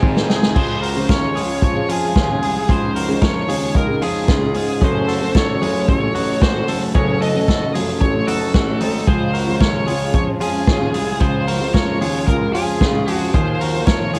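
Nostalgic and breezy, this jangly indie pop excerpt moves at 113 BPM in Db major, opening with a short drum fill on a punchy, up-front vintage kit with dark cymbals before settling into a straight 4/4 groove. A distorted, high-gain lead guitar carries the melody over a full-bodied picked steel-string acoustic and a bright, twangy clean electric guitar playing arpeggios with subtle chorus, while a deep concert grand piano holds down the bass in the background and a very quiet, woody string section enters at 0.6 seconds with lush sustained chords. The chords shift from Db to Gbm and back before landing on Ebsus2, all wrapped in light reverb and the hazy character of a home cassette recording.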